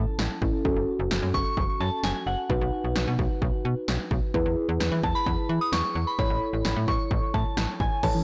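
A straight 4/4 pulse from a punchy analog drum machine drives this nocturnal, melancholic synth-pop fragment, where a snappy, metallic FM slap bass with tube saturation and muted, felt-like synth keys with chorus move through A, F#m, B and E, a soft, warbling vintage bell melody with phaser and tape echo enters at 1.3 seconds, and a lush unison pad and a gentle round pluck appear only at 8.0 seconds, all within a light digital ambience and an overdriven, blown-out recording.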